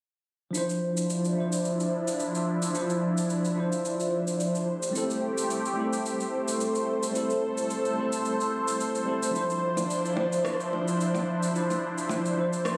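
Relaxed and smooth, this sunset chillout excerpt moves at 109 BPM in 4/4 with a light 16th-note swing, drifting from Dm9 to Am7 and back to Dm9. A clean tine electric piano sits up front, heard through built-in speakers and shaped by a low-pass filter and delay, while a lush unison pad of detuned sawtooth and square waves holds sustained chords with a slow attack, its bright, thick tone treated with chorus and phaser. Both play from 0.5 seconds to the end of the cut, sharing the span from F3 to C5. Underneath, an electronic shaker and rim click keep time with a produced, tape-tinged character. At 9.8 seconds, round, low-tuned bongos join in the background, played with hard hands and miked close. The whole piece is bathed in a wet scoring-stage reverb with a 1.8-second decay and digital ambience, captured on a phone in the room.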